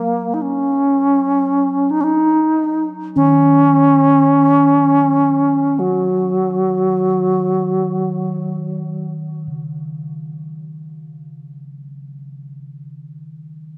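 Peaceful world meditation music in free time, cut from a longer piece, where a bright bass flute carries the melody up front with a pure, crisp-edged tone and expressive vibrato. Beneath it, a bronze singing bowl struck with a felt mallet rings softly, metallic yet mellow, with slow beating. After the flute stops at 9.1 seconds, the bowl continues alone until 13.0 seconds, all in a wet concert-hall reverb and the warbling pitch drift of worn cassette tape.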